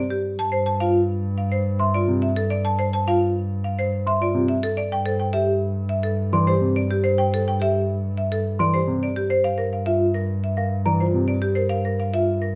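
Classical minimalist pattern music, urgent and hypnotic, in which a bright, woody marimba with hard mallets carries the melody up front over a smooth bowed double bass on G2, while a ringing vibraphone with fast motor vibrato and a delicate, slightly out-of-tune celesta entering at 1.8 seconds spin arpeggios and a warm grand piano adds short-sustained accompaniment, within a wet stone room.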